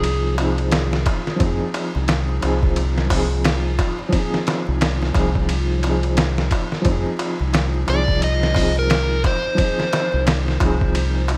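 This smoky, brooding trip hop excerpt opens with a gritty, pitched-down sampler-style drum kit, a round, deep dub fingered electric bass up front, a dark, woody upright piano with audible action noise, and a brief snatch of overdriven slide guitar, all set against vinyl crackle and a digital ambience. The compressed kit's thumpy kick, medium-tuned snare, hi-hat and ride cymbal carry a swung 16th-note feel, while a clay-shelled darbuka sits distant in a large room in the background. The boxy, intimate piano comps on a single Fm7 chord, colored by tremolo and tape echo. At 1.2 seconds a very quiet reversed texture enters, a granular, dreamy swell with a soft attack and long release that hangs on a single F. The slide guitar returns as the melody from 7.9 to 10.2 seconds, its fingered, overdriven line trailing dub echo.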